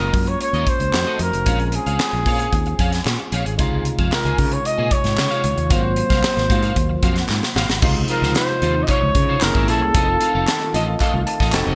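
Polished 1980s jazz-funk pop with a breezy, urban mood, heard in a straight 4/4 feel as a short cut from a longer piece. A breathy, whispered flugelhorn carries the melody up front, its light vibrato and soft attack touched with delay, over a barky tine electric piano that is lightly overdriven and coloured with lush chorus. An electric guitar at the edge of break-up picks a riff through analog chorus, while a round, dark fretless bass anchors the low end. The studio drum kit is prominent, with a punchy kick, high-tuned snare, hi-hat and crash in gated reverb, joined by crisp group handclaps in the background and a mellow sawtooth pad that enters at 3.6 seconds. A drum fill leads into the second section at 7.8 seconds, and the electric piano plays a fill from 10.5 seconds, framed by bright digital 1980s production and a touch of small-room ambience.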